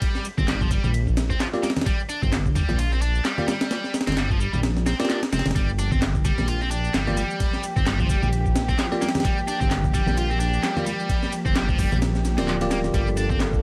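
A tight, double-tracked distorted electric guitar riff with delay opens this gritty, funky breakbeat at 130 BPM in G minor alongside an up-front, compressed sampler-style kit with a thumpy kick, high-tuned snare, hi-hat and ride, plus a faint analog shaker and handclaps, all swinging on 16ths over a single Gm7 chord; a deep, rumbling detuned saw bass and very quiet close congas come in at 0.4 seconds, a bell-like tine electric piano adds phased, delayed stabs from 1.5 seconds, and a dark, bowed chamber string section with light vibrato and sidechain pumping holds sustained chords from 5.6 seconds, while vinyl crackle and light reverb color the mix.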